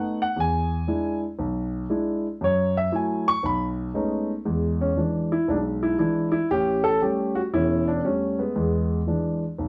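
A dark, mellow grand piano sits up front in light reverb, its natural tone carrying long sustain across a range from E1 to C#6. This playful, swinging solo jazz cut, taken from a longer piece, moves at 117 BPM in 4/4 with a swung eighth-note feel in E mixolydian. The harmony runs through E7, F#m7 and B13 before a second section shifts to A7 and settles back on E7 by 8.6 seconds.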